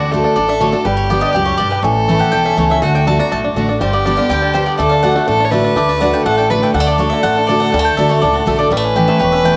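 A straight 4/4 feel carries this rustic, virtuosic bluegrass excerpt, where a twangy fingerpicked banjo and a bright double-string mandolin share the melody, a clear, up-front bowed fiddle with light vibrato adds a second line, a full-bodied dreadnought guitar picks the accompaniment, and a woody, thumpy pizzicato upright bass holds the bottom, with the banjo, mandolin, fiddle and guitar carrying a cassette-tape tint and the home recording set in a moderate spring reverb.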